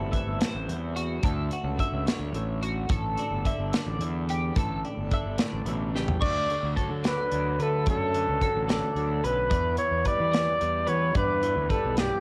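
A cassette-taped home recording bathed in studio reverb gives this short slice of playful, intricate math rock and midwest emo in 6/8 a hazy, lived-in sound. A twangy, direct-recorded clean electric guitar sits in the background while a bright twelve-string electric guitar spins compressed arpeggios through analog chorus and tape echo, over a fuzz-drenched fingered bass and an airy small-room drum kit with a punchy kick and medium-tuned snare up front. The chords move through Am7, Dmaj7 and A7sus4, and after a drum fill at 5.9 seconds a mellow, smooth-topped trumpet takes the solo melody with vibrato at 6.2 seconds as the harmony shifts to Dmaj7 and Em7.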